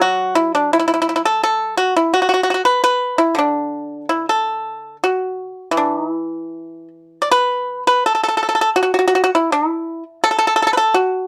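A dark production with light reverb frames this serene, flowing passage of Chinese traditional music, cut from a longer piece, in which a solo pipa, played with fingerpicks and sitting up front with a dry, percussive, warm tone, moves freely in rubato from its opening phrase into a new section at 7.3 seconds.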